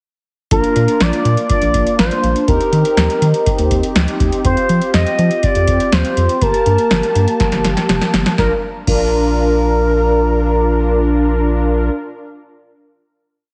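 A whole synth-pop piece in Bb major at 122 BPM opens at 0.5 s with a smooth, expressive sawtooth lead singing motif-based call phrases with vibrato, over held, close-voiced chords from mellow, brassy synth brass with chorus and phaser, a round, deep sequenced analog bass, and a straight electro drum-machine beat with a punchy snare and metallic hats. The wistful, nostalgic verse moves through Bb, Eb6, Fsus2 and Gmadd9, and a drum fill at 7.4 s leads into a final Bb chord at 8.4 s, with the drums stopping at 9.0 s. A moderate recital-hall reverb surrounds the parts, and the heavily compressed, radio-like sound keeps the top end dull.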